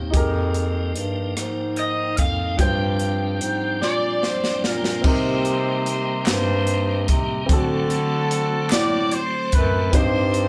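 In a slow, straight 6/8 at 49 BPM, this fervent, soulful gospel piece in C minor rests on a punchy, up-front acoustic drum kit with dark cymbals and a clear, classical-style bass clarinet beneath an intimate grand piano with audible action noise and a piping tonewheel organ with key click, chorus vibrato and a fast rotary speaker, while an overdriven slide guitar with tape echo carries a brief melody from 1.8 seconds, a loose, vibrato-rich jazz horn section takes up the tune at 3.8 seconds, very quiet crisp handclaps join at 6.3 seconds, and a drum fill ushers in the second section, the band sharing one room with light reverb.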